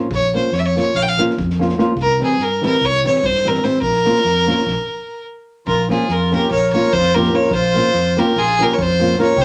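This Balkan wedding-band tune is a fiery, virtuosic snippet cut from a longer piece, racing along at 292 BPM in eighths in a straight 9/8 and set in Bb Dorian with a raised fourth over a Bbm to C and back to Bbm progression. A bowed solo fiddle carries the melody up front, biting and earthy with a light vibrato. Beneath it, a small, dark, thumb-plucked nylon-string guitar supplies the accompaniment, while a fingered electric bass adds an amped, punchy low end. An unplugged drum kit sits distant in the background, its roomy sound built from a punchy kick and a medium-tuned snare played with bundle sticks. After the band stops from 4.7 to 5.7 seconds, the section repeats and a reedy, airy accordion joins with a second line, its slow beating giving it a gentle shimmer, all within a wet club reverb.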